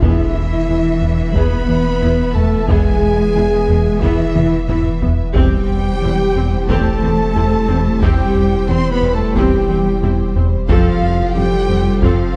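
A dark, lush film-score sound fills a scoring stage with moderate reverb, in this relentless, futuristic blend of orchestra and electronics, cut from a longer piece. A mellow, distant duduk carries the melody with vibrato and scooped notes in a folk style. It sits alongside a symphonic violin section playing a soft-attack, expressive upper line, while another, more focused violin section also plays the melody in the background. Beneath them, a rich studio viola section, a smooth, even cello section heard up close, and a very quiet, far-off chamber double bass section fill out the bowed ensemble, while a roomy French horn section holds sombre sustained chords. A nostalgic, lo-fi tape-like pad warbles with chorus, and a round, evolving analog bass riff and a deep, clean sine sub bass thicken the low end. A taiko ensemble plays with heavy sticks in a small room and adds a fill from 4.4 to 5.4 seconds, as the harmony moves from E to C over E and then to F.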